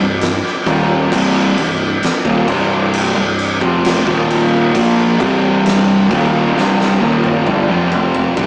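A raw, double-tracked overdriven garage guitar and two thick fuzz guitars, one darker than the other, play a riff in C minor over a growling, round picked bass and a very quiet, shouting tonewheel organ with slow rotary chorus and key click, as an oversized low-tuned drum kit with a fat snare and punchy kick enters up front at 0.2 s and plays a fill from 6.6 s, making a heavy, sludgy stoner and doom metal excerpt at 66 BPM with a rough, saturated rehearsal-room sound and stone-room reverb.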